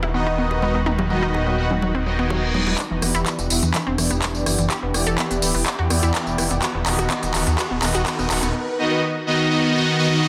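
Progressive house at 125 BPM, expansive and driving, this excerpt opens with a shimmering, ethereal pad, a round analog pluck arpeggio with tape echo, a rumbling detuned saw bass, a big-room dance kit with crisp hats and overdriven electronic bongos, congas and toms, which stop at 2.8 s as a barely audible deep electronic kick enters and a build-up begins, while a smooth, up-front supersaw playing stabs through phaser and a filter sweep carries on to 10.3 s, with a very quiet reverse cymbal and riser, sidechain pumping, a wet digital room and a dense, heavily limited master moving from B/D# to Em7 and back.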